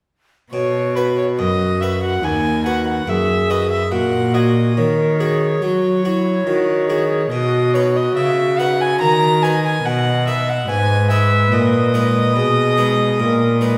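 In an unhurried, rubato 4/4 at 71 BPM, this serene, dance-like excerpt from a baroque-style sonata movement in B major sets a nasal, gut-strung violin melody over a pure, softly vibrating wooden flute line, a round, plucked Flemish harpsichord and a rich, reedy cello bass, all playing from 0.5 s to 13.8 s in a wet recital hall while the chords move from B through F#/A# and back to B before settling on G#m.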